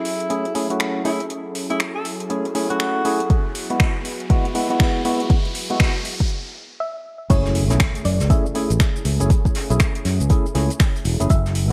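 A swung 120 BPM groove in 4/4 drives this moody, deep house cut in F# minor, opening with a brief, clear alto saxophone phrase with light vibrato and scooped notes over a smooth, warbling analog pad, hollow organ stabs and an overdriven house kit of metallic hats, finger snaps, shaker and crash, while a riser builds in the background. An up-front, overdriven electronic kick arrives at 3.3 s, a dark, round pluck melody appears during a short break, and at 7.3 s the drop brings an impact, a growly fingered electric bass and a background brush kit of snare and hats in a small room. The bright 1980s-style digital production sits in a moderate plate reverb, with sidechain pumping on the pad, organ stabs and bass.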